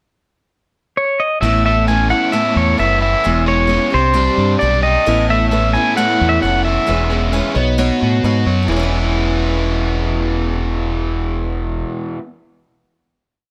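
Folk rock with a heartland rock lift, this short, hopeful piece moves from a pickup bar into a pre-chorus that settles onto a final chord at 8.7 seconds. An up-front, compressed pedal steel guitar carries the motif-based melody with fingerpicks, slide and volume swells under a slapback echo. Beneath it sit folk strumming of open chord shapes on acoustic guitar, double-tracked picked arpeggios from a biting overdriven electric guitar and a dark, round fingered bass playing simple root-and-fifth lines, while from 5.1 seconds a woody upright piano adds close-voiced quarter-note chords in the background, all in a light studio reverb.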